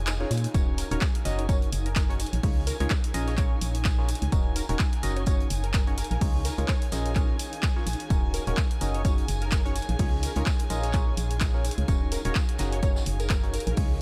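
Energetic yet bittersweet, this piano house excerpt in Bb minor moves at 127 BPM with a swung sixteenth-note feel, cycling through Bbm7, Ebm7, Gb6 and Dbadd9. A dry analog drum machine with handclaps and hi-hat and a natural-sounding vintage kit with snare, hat and tambourine come in at 0.1 seconds, during a brief break that runs to 0.5 seconds, when an up-front, overdriven electronic kick joins to drive the groove. A hollow, dark FM bass sits forward in the mix, while a wave-folded percussive organ stab with chorus, phaser and delay carries the riff, its sidechain pumping shared with the bass, strings, pad and vintage kit. In the background, a bowed chamber string section with light vibrato holds sustained chords, a blurred granular cloud pad drifts with its own reverb, and a catchy, detuned plucky unison lead with phaser, cassette tape colour and delay traces the melody from 0.8 seconds, all set in a small, lightly reverberant room.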